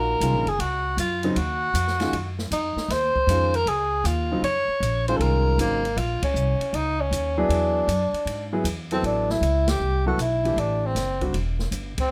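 Swung eighths in 4/4 drive this searching, intense modal jazz passage: a mellow, distant-sounding tenor saxophone with soft-attack vibrato and plate reverb carries the melody up front, a clear, natural upright piano accompanies until 11.3 s, a woody, thumpy pizzicato upright bass on gut strings anchors the low end, and a softer open acoustic drum kit in a small room adds dark cymbals and a boomy kick, with band accents at 6.2 s and a shift to a new modal center at 9.0 s.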